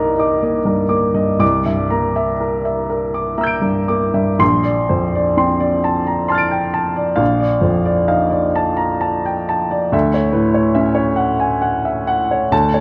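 Hazy and luminous, this short cut from a longer impressionist classical piece for solo piano drifts in a rubato 6/8 through rich extended chords such as Cm9, Bbmaj9 and F13/Bb before settling on Dmaj9 at 9.9 seconds. The baby grand sounds clear, open and up front across a span reaching from deep bass to high treble, with a second passage beginning at 4.4 seconds. A wet recital-hall reverb and a dark production give the 12.8-second piece a softly glowing space.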